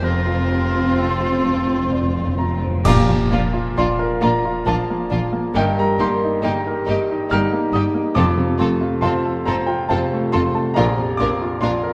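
A romantic classical movement for piano and orchestra, this excerpt sways in a three-beat metre with rubato phrasing and a lush, passionate mood. The clear baby grand piano carries the melody up front throughout, shared with a smooth chamber violin section, while a studio violin section with expressive portamento sits in the background and a very quiet viola section supplies accompaniment. Beneath them, a distant, rich cello section and a dark double bass section with soft attack hold the bass, and a mellow, vintage French horn section sustains chords. In the opening moments an oboe, an airy flute and a very quiet, close-miked clarinet add brief lines, finished by 2.5 seconds, as a hard-mallet timpani fill leads to a full ensemble accent at 2.8 seconds. A cymbal swell, dark clash cymbals and concert bass drum sound close and dry through 4.6 seconds, and a wet scoring-stage reverb surrounds the orchestra.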